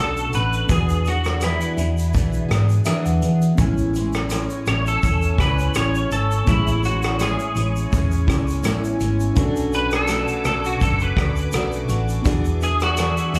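A bright, clean picked electric guitar leads this hazy, dreamy indie and bedroom pop excerpt, soloing up front throughout with ensemble chorus, slapback echo and digital delay. A mellow tine electric piano with a cassette-tape tint and slapback sits beneath it, adding a short fill from 2.5 to 3.6 seconds, while a full-bodied dreadnought acoustic guitar, picked with audible finger squeak, wavers through analog chorus and a warbly pitch drift. A dark, round hollow-body short-scale bass sits up front, and an unplugged drum kit played with bundle sticks enters at 0.2 seconds with a punchy kick, hi-hat, rim click and shaker in a roomy, distant studio space, joined by a very quiet, grainy egg shaker. From 4.1 seconds a swirling, detuned sawtooth pad fades in behind everything with slow attack, phaser and chorus. The whole thing has a gently swung feel and drifts over jazzy seventh chords, heard as a live gig through a club PA with light reverb.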